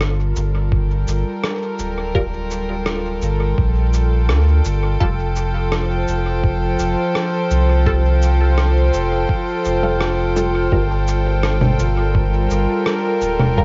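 Ambient dub with a meditative, spacious mood, cut from a longer piece in a straight four-beat metre. A close chamber string section holds sustained chords up front, its bowed, reedy gut-string tone carrying light vibrato in a period style, while a deep, round sine sub bass sits beneath it with a fast attack and long sustain. Muffled, pitched-down rim clicks, shaker and congas run throughout with a dub echo, joined at 0.7 seconds by a compressed, thumpy electronic kick, both sampler-style, tape-softened and re-recorded in a small room. From 2.1 seconds a filtered dub chord stab sits in the background, its detuned sawtooth and wave-folded tones plucked short through a phaser and echo. The harmony moves from Gm7 to Fadd9 and returns to Gm7 as a new section begins at 10.7 seconds. The whole recording has a homemade cassette character, with vinyl crackle, a digital ambience and a dulled top end.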